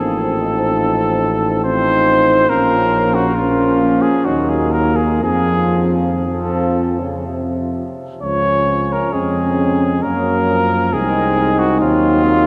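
Yearning and melancholic, this hymn-like classical passage for brass band unfolds in a slow, rubato 3/4 at roughly 59-71 BPM, cut from a longer piece. A mellow cornet carries the melody up front with light vibrato and a soft attack, while a dark French horn section sits distant in the background on a second line. A clear trombone and a close-miked euphonium with vibrato supply accompaniment from behind, and the tuba anchors the bass up front with a smooth top. The harmony moves from F7/A through Bbm, Ebm and F, then on to Db, Gbmaj7 and a closing Cdim. A cathedral reverb with a long 5.3-second tail surrounds the band, and every part sounds throughout the 12.5 seconds.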